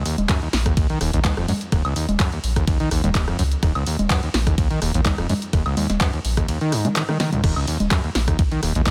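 This acid house excerpt runs at 126 BPM in a straight 4/4, with a trippy, driving mood in Eb minor, resting on an Eb5 chord. An overdriven acid bass opens at 0.0 seconds, playing a squelchy, gritty sawtooth riff between Db2 and Eb3 that is resonant and up front, with a filter sweep, distortion, tube saturation, analog chorus and digital delay. A punchy analog drum machine sets out congas, crash and ride cymbals, handclaps, hi-hat, rim click, snare, toms and woodblock, its tape-tinged snare, clap and hats sitting close in a short room. Beneath them, a warm, round sine sub bass holds sustained notes from Eb1 to Db2 with sidechain pumping, while a thumpy, sampler-style electronic kick, re-recorded in a large room, enters at 0.3 seconds. A drum fill arrives at 7.1 seconds, and the whole excerpt sits in a digital ambience.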